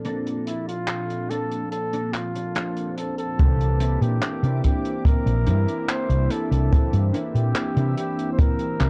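A round, hollow-toned fretless electric bass sits up front in this dreamy, nostalgic vaporwave fragment, entering at 3.4 seconds alongside a punchy acoustic kick as the harmony moves from Bbmaj7 to C9. The tempo is a relaxed 72 BPM in straight 4/4, with a compact cocktail kit of handclaps and hi-hat keeping time in a small, dark room. A mellow sawtooth synth brass carries the accompaniment with a soft attack and subtle chorus, and a filter sweep runs through the opening stretch. Behind it, a lush, detuned unison pad holds thick sustained chords with a slow attack and long release. A clean, compressed electric guitar plays a background riff colored by analog chorus, analog delay and a gritty 12-bit sampler texture, while a smooth, classical-style flugelhorn takes the solo melody through tape echo. The whole fragment, just under 9 seconds long, has a dark, warm, cassette-tape production.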